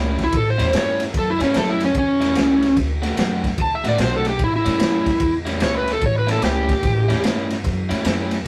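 A rough rehearsal-room recording with moderate studio reverb captures a soulful, swaggering electric blues shuffle at 148 BPM in A mixolydian, cut from a longer piece, with the chords moving from A7 to D7 at 2.8 seconds and back to A7 at 4.4 seconds. An overdriven slide guitar sits up front, playing a warm, fingered solo over a bright, compressed electric guitar riff and a woody, thumpy upright bass plucked pizzicato on gut strings. A crunchy breakbeat kit of punchy kick, medium-tuned snare and ride cymbal sounds dark and gritty, its top rolled off.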